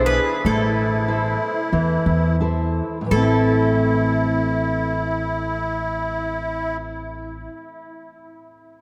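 Brooding and bittersweet, this short cut from a longer Greek folk piece in A harmonic minor moves at 83-99 BPM in a straight 4/4, slowing down over the first 3.1 seconds, with an A minor chord arriving at 0.4 seconds: a bright, metallic bouzouki with double strings carries the melody, a reedy, shimmering musette accordion sits up front with a second line until 6.8 seconds, a fingerpicked steel-string guitar with fresh strings and audible finger squeak supplies the accompaniment, and a woody, thumpy pizzicato upright bass anchors the low end, the band heard in a vast, echoing cathedral space.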